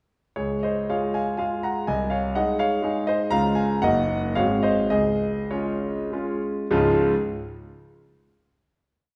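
Classical romantic dance in triple time, this short, complete piece for solo grand piano moves with graceful, proud poise in Db major. The tempo is free and elastic, ranging from 94 to 130 BPM, with dotted rhythms giving the dance its lilt and a marked slowing from 2.6 to 6.7 seconds. The piano's tone is clear, smooth and vintage, carrying a tune in thirds up front while the bass and chords place a stress on the second or third beat of the bar. The harmony moves from Db through Ab/C, back to Db, then Ebm/Gb and Ab7 before settling home on Db, and a final chord rings from 6.7 seconds. A wet recital hall reverb surrounds the instrument, which is heard from further back in the room.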